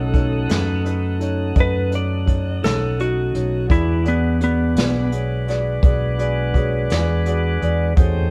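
A slow 12/8 blues rhythm rolls underneath, with a vintage brush kit setting a dark, smooth groove through its hi-hat, medium-tuned snare and punchy kick. The drums sit up front, as does the fingered electric bass, whose round, amped tone holds the low end. Cut from a longer piece, this passage has a gritty, rollicking mood and moves from B7 to E7 at 3.7 seconds. A clean, compressed lap steel guitar carries the melody as a slide solo until 5.1 seconds. A tonewheel organ holds smooth, warm sustained chords through a slow rotary speaker. A boxy concert grand piano with a deep bass and long sustain fills out the accompaniment. The band sounds as if it is playing live together in one room, with light reverb.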